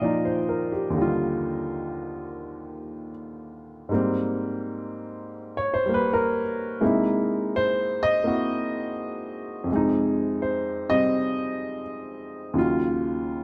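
Solo jazz for upright piano, relaxed and playful, moving at 83 BPM in 4/4 with a swung eighth-note feel and a rubato touch. The piano carries everything alone across the full 13.4 seconds, ranging from Eb2 up to G5, its woody, natural tone set up front in the mix. The harmony opens on Ebmaj9 in Eb major, then shifts to Ab major at 3.9 s with Abmaj9, passing through C7alt and Fm7 before settling on Ebm9 at 12.6 s. Light reverb gives the piano a little air, while the overall production leans dark and warm. Tuned slightly low at A4 = 438 Hz, this short cut from a longer piece feels relaxed and unhurried.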